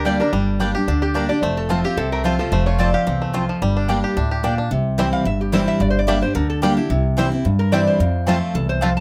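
Haunting and rustic, this brief bluegrass fragment in straight 4/4 sets a metallic, nasal lap resonator guitar played with slide and a twangy, percussive fingerpicked banjo on the melody, while a woody mandolin adds stabs on its double strings, and a bright, full-bodied picked steel-string dreadnought guitar and a thumpy pizzicato gut-string upright bass sit up front beneath them, heard through close, detailed microphones with light reverb.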